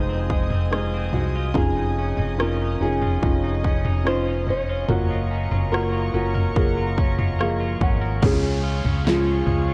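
A straight 4/4 pulse at 72 BPM carries this emotional, hopeful pop ballad in Db major, where a thumb-plucked nylon-string guitar with finger squeak sings the melody over a soft, thick-felt upright piano that adds a fill at 6.6 seconds, a reedy, distant string section holding sustained chords with light vibrato, twangy, slightly broken-up electric guitar arpeggios, and a round, up-front fretless bass, while a punchy, overdriven pop drum kit with a fat snare joins at 0.3 seconds and an electronic downlifter arrives at 8.2 seconds as the chords move from Fm7 through Gbmaj7 to Db, all wrapped in light reverb and warbling cassette-tape pitch drift.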